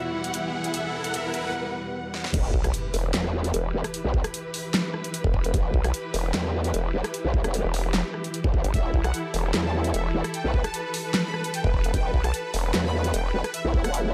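A growling, saturated bass lands up front at the drop at 2.3 seconds, joined at 2.5 seconds by a nasal, resonant vowel-sweep wobble bass, driving this heavy, aggressive half-time wobble dubstep cut from a longer piece. Before it, a riser and impact, a faint warbling lo-fi pad and a smooth detuned supersaw with tape echo open the build-up over lush bowed symphonic strings that sustain chords throughout with sidechain pumping. The drop adds a knocking electronic kick to a layered kit of huge snare, bright hats, handclaps, rim clicks and crashes in a dry mix, and the supersaw melody returns at 8.7 seconds.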